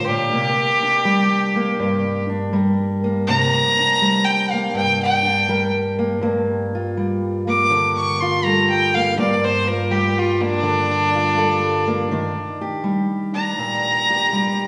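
Bathed in the lush, lingering reverb of a church or concert hall, this soulful, smoky acoustic country blues in G minor (tuned to A4 = 444 Hz) swings gently at 82 BPM in 4/4, with an intense, clear bowed fiddle taking the solo up front with light vibrato and a smooth top over a dark, boxy fingerpicked parlour steel-string guitar that moves through Csus2, Gm9 and Ebmaj7 across this 14.7-second passage cut from a longer piece.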